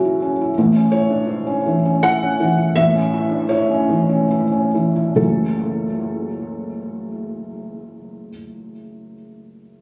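Neoclassical minimalist piano in a melancholic, wistful mood, played in a rubato 3/4 that slows through the opening 5.2 seconds before a new passage settles onto an F#m7 chord. A felt-muted upright piano plays alone across a range from F#1 to F#5, its dark, intimate tone close up front with short sustain, audible action noise and tape echo. The short cut, recorded on a phone in the room, sits in light reverb.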